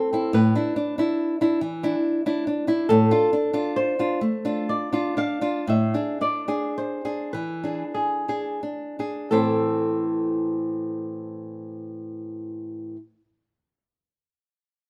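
Solemn and melancholic, this romantic duo for two guitars moves in a rubato three-beat lilt, easing into a gradual slowdown from 1.6 to 9.3 seconds before a new section arrives on an A minor chord. A fingerpicked flamenco guitar carries the melody with a warm tone and audible finger squeak, while a small, up-front nylon-string guitar with fresh strings fingerpicks the accompaniment beneath it. The pair sound as if playing live together in one room, framed by a moderate studio reverb in this short excerpt from a longer piece.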